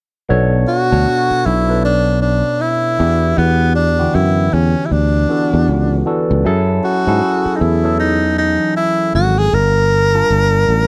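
A dry, close recording with a 1970s studio character frames this short neo-soul and R&B excerpt, cut from a longer piece, in B minor at a relaxed 78 BPM with a swung sixteenth-note feel. A barky tine electric piano, lightly overdriven through a combo amp and colored by a phaser, lays down the accompaniment from 0.3 seconds, moving through Bm9, Em9, F#m9 and Gm9. A sustaining fretless electric bass enters at the same moment, growly and up front in its low register. At 0.7 seconds a clear tenor saxophone takes the solo melody, punchy and pop-styled with vibrato and a slapback echo. The mood is late-night and introspective, with the bass and saxophone sitting forward and the electric piano a little behind them.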